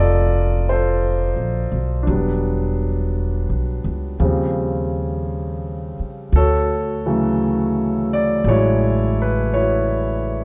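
A concert grand piano and an upright bass enter together in an intimate, romantic jazz ballad at a slow, gently swung pace in four. The piano carries the accompaniment with a warm, open tone, deep low end and long sustain, moving through rich extended chords: Bbmaj9, Em9, Eb13 and then Dmaj9, each held for roughly two seconds. Beneath it, the pizzicato bass has a woody, steel-strung sound and stays in its lowest register. Both instruments sit up front, caught by close, detailed microphones in a dry space with little reverb. This brief passage of about 10.4 seconds is cut from a longer piece.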